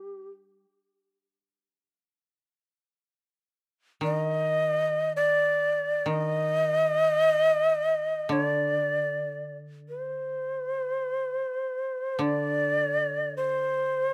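A brief opening flicker of airy, end-blown bamboo shakuhachi and woody, fingerpicked koto falls away before both return at 4.0 seconds in this austere, calm stretch of Japanese traditional chamber music cut from a longer piece, the up-front shakuhachi carrying the mellow melody with vibrato and tongued notes over the dry koto accompaniment in light reverb.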